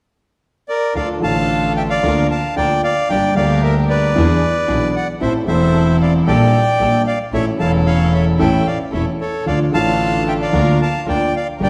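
Sultry and tense, this short tango fragment moves with a rubato feel, its reedy, bright bandoneon carrying the melody up front and close-miked from 0.7 seconds. At 1.0 seconds a deep-voiced concert grand piano joins in accompaniment, an earthy, biting bowed double bass anchors the low end with light vibrato, and a background string section adds bowed stabs with a gut-string, period-style tone. The ensemble sits in the lush reverb of a church or concert hall, though the bandoneon itself stays dry.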